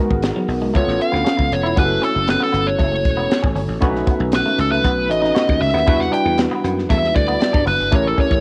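An upbeat, glossy slice of polished 1980s jazz-funk pop at 117 BPM opens with a barky tine electric piano through analog chorus and a twangy, compressed clean electric guitar riff bathed in lush chorus, joined at once by a growly, foam-muted thumbed slap bass and a crisp fusion kit with a high-tuned snare and punchy kick. From 0.8 seconds a nasal, overdriven lead guitar with a parked wah sits up front, carrying the melody over changes that move from G#m7 through C#7alt, F#m7 and B7 to Em7. The short cut, taken from a longer piece, has the character of a home cassette recording, with light reverb and small room ambience.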